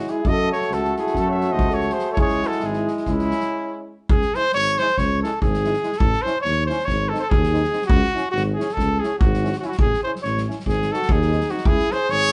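Fiery and virtuosic, this Balkan folk brass band fragment in 9/8 at 285 BPM in C# harmonic minor keeps speeding up, with a mellow trumpet with light vibrato carrying the melody up front, a smooth-topped flugelhorn adding a second line until 3.9 seconds and returning at 10.9 seconds, a distant, roomy, brilliant trombone and a clear, vintage euphonium sitting in the background, a soft-attack tuba holding the bass, and a soft-mallet drum kit with a fat snare and punchy kick driving the band in a moderately reverberant live room, broken briefly by a break at 3.5 seconds.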